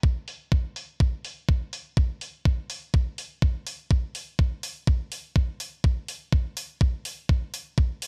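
An up-front, thumpy, sampler-style electronic kick drum drives this bittersweet, melodramatic italo disco excerpt at 124 BPM in a straight 4/4, joined at 0.3 seconds by a sampler-style electronic hi-hat softened by low-pass filtering, all set in bright 1980s-style digital production with little reverb.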